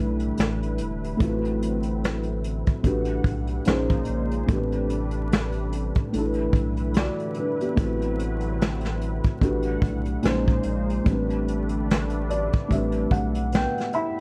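Melancholic and hazy, this lo-fi hip hop excerpt moves at an unhurried 73 BPM in 4/4, with a 58% swing on the 16ths, in A dorian and tuned to A4 = 435 Hz. A felt-muted upright piano carries the accompaniment up front, its mellow, boxy tone softened by a low-pass filter and plate reverb, and it plays a fill from 11.9 seconds to the close. Behind it, a detuned sawtooth pad holds slow-attack chords, smoothed by chorus, filtering and plate reverb. A saturated sub bass lays down a deep, thick triangle foundation until 13.7 seconds. A vintage brush drum kit enters at 0.2 seconds with a punchy kick, a medium-tuned snare and hi-hat, its dark, rolled-off sound roughened by 12-bit sampler grit. The harmony moves through chords such as Em9/A, Bbm11 and Am11, set in light reverb over a bed of vinyl crackle.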